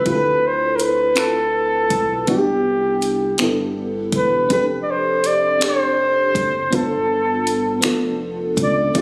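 A slow, straight six-eight pulse at 54 BPM, marked by finger snaps, metallic hats and a knocking kick from an up-front electronic R&B kit, carries this sultry, yearning excerpt in D dorian through Dm9, Cmaj9, F69 and G9. A warm flugelhorn with light vibrato and a smooth top sings the solo melody up front, over a lush, dreamy FM electric piano with a soft pad layer and chorus, while a round, deep analog bass with a filter pluck anchors the low end. The sound is captured on a phone in the room, with light studio reverb.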